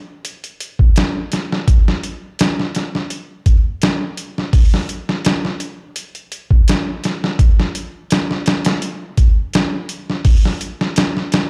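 Trip hop with a cinematic, dark mood, built around a straight 4/4 groove on a boom bap sampler-style drum kit. The kit carries the whole piece from 0.2 seconds, with hi-hat, kick drum and snare drum sitting up front in the mix. Its sound is compressed, pitched down and gritty, with a thumpy kick, a medium-tuned snare and a tape-warm character. The drums carry a studio reverb, and the recording as a whole has light reverb and a digital ambience, as if played on a big sound system in a bare room. This short piece is cut from a longer track and stays in a single section throughout.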